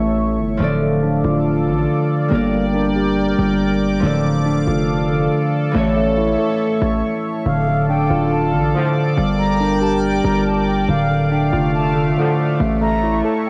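This dark, hard-hitting hip hop cut from a longer piece opens with a mellow, clean tine electric piano playing arpeggios up front, colored by phaser and tape echo. Beneath it sit a fingerpicked Celtic harp with a ringing acoustic tone, an evolving, detuned sawtooth pad holding bright, resonant chords through chorus, and a punchy, heavy 808-style bass with a fast attack and decaying sine body. The tempo is 140 BPM in 4/4 with a half-time feel, in D harmonic minor, and the chords cycle through Dm, Gm and A. After a brief break, a reedy, airy concert flute enters at 7.5 seconds with a straight-toned, tongued second line, and the harp drops out at 9.1 seconds. A distant, roomy brass ensemble adds short classical-style stabs. Every part except the bass is softened by cassette tape grain, and light studio reverb gives the whole a home-recorded character.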